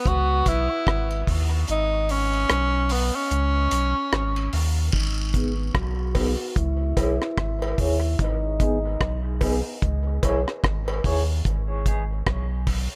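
A breathy, whispered tenor saxophone opens this heavy, deep dub reggae passage in G# minor at 74 BPM, with a swung 16th-note feel. It carries an intimate solo melody up front, soft in attack with light vibrato, and dub echo and a low-pass filter trail behind it. A round, sine-like sub bass and a dry, dark reggae drum kit of hi-hat, tight kick and rim click arrive almost at once. A barely audible tonewheel organ with key click and slow rotary speaker drifts underneath during the opening break. The kick drops out at 1.7 seconds, thinning the groove as the chords move between C#m and G#m. A filter sweep begins at 4.9 seconds, and a clean, picked electric guitar enters at 5.3 seconds with tremolo, filtering and dub echo. Throughout, a distant cowbell and jawbone-type rattle sit far back in a large room, high-passed and echoing, before the passage cuts off mid-flow.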